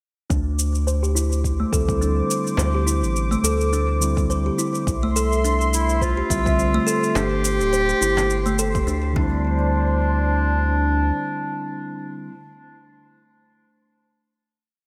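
Mystical and earthy, this organic downtempo piece at 105 BPM with a gentle 16th-note swing sets a woody, hollow kalimba looping a 12-step arpeggio that drifts against the bar under a filter sweep and delay, over a round, dark analog bass with long gliding notes, a soft deep electronic kick, a tape-toned shaker and a frame drum struck with hard hands in the background, while a detuned, warbling analog pad with chorus and sidechain pumping holds chords and a mellow tine electric piano adds syncopated quartal stabs from 1.7 s, before a smooth-topped clarinet carries arching motifs from 5.7 s alongside a breathy, wind-like held high note, set in a lush hall with a bright 1980s-style digital sheen and closing on a final hit at 9.4 s.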